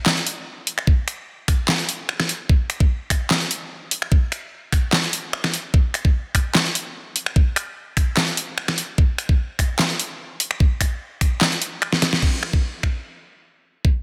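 An overdriven dubstep drum kit opens this aggressive, heavy excerpt in a half-time drop, its deep snare, bright hats, crash, finger snaps and handclaps sitting up front, joined at 0.9 seconds by a knocking electronic kick re-recorded in a small room. A drum fill at 11.9 seconds leads into a band accent at 12.1 seconds, after which the kit stops and the kick carries on briefly. Light reverb surrounds a dense, heavily limited modern master.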